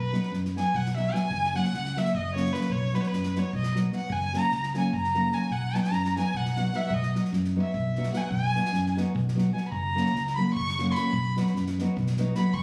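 Captured on a phone in a recital hall, the recording carries a moderate reverb of about 1.7 seconds, a touch of studio ambience and compression. This is an exuberant, wild piece of Balkan folk in the manner of a wedding band, racing along at 300 BPM counted in eighths in a straight 7/8 metre and rooted in B major, with the harmony swinging between B and F#. A clear, focused erhu sits up front and carries the melody as a solo throughout the 12.6 seconds, its bowed line rich with vibrato and portamento between B4 and C#6. Beneath it, a nylon-string guitar with fresh strings is fingerpicked in a deep classical style, while a fingered electric bass gives a direct, warm foundation in the low register. An unplugged drum kit played with bundle sticks adds an airy, polished kick and medium-tuned snare further back in the mix, with the punchy kick giving the odd-metre groove its drive. The passage is cut from a longer piece.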